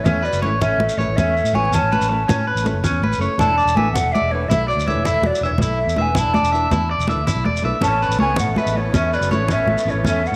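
Highlife guitar band music in a joyful, sunny 12/8 at 108 BPM in A major, cut from a longer piece, where a hollow, breathy jazz flute with vibrato carries the melody over a soft-attack alto saxophone second line in the background, a dark, round foam-muted electric bass, twangy arpeggios from an electric guitar at the edge of break-up, fingerpicked nylon-string guitar with finger squeak, hard-handed close congas and a grainy shekere, all moving from Aadd9 to E7sus4 and back, with a buzzy, overdriven combo organ adding sustained chords from 7.8 seconds inside a moderate echo-chamber reverb.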